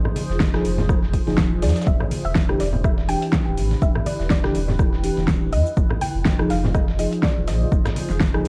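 A light reverb and a cassette-tape grain color this short cut from a longer deep house piece, which moves at 123 BPM in 4/4 with a 56% swing on the sixteenths and a deep, hypnotic mood. A mellow FM electric piano plays dark, warbling chorused stabs with tape echo and sidechain pumping, while a soft, rounded pluck carries the melody between D5 and G5 through analog chorus and tape echo. Behind them, a granular cloud pad adds a blurred, evolving haze with a slow attack and long release, pumping in the background. The groove builds from the first beats: an overdriven house kit with a fat snare and metallic hats, low-tuned congas with a thin skin, and a gritty, compressed sampler-style kit with shaker sitting further back, before a round sine sub bass joins at 0.3 seconds and a punchy, layered electronic kick lands at 0.4 seconds. The harmony drifts from Fm7 to Em7 at 1.9 seconds and returns to Fm7.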